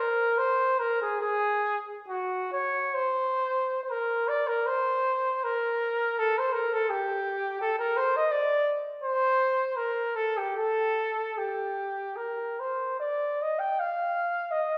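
A mellow solo trumpet with light vibrato opens this lyrical, nostalgic classical fragment, cut from a longer unaccompanied piece, playing expressively in a rubato 3/4 between 55 and 87 BPM, tuned to A4 = 439 Hz, shifting to a new section at 3.9 seconds and ranging from Gb4 to G5, sitting up front yet distant and roomy within a recital hall's 1.8-second reverb until it ends at 14.8 seconds.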